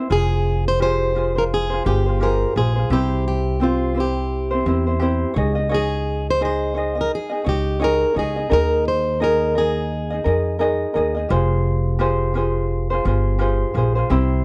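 Acoustic pop with a wistful, tender mood, this short cut from a longer piece pairs a light, thumb-plucked ukulele accompaniment and a thumpy, gut-strung upright bass with a full-bodied, fingerpicked jumbo steel-string guitar carrying the melody until 10.9 seconds, all heard up front in a dry, close 1970s-style studio sound with small room ambience, over a swung 16th-note feel and chords moving from Fmadd9 through C, Dbsus2 and Ebsus4 back to Fmadd9.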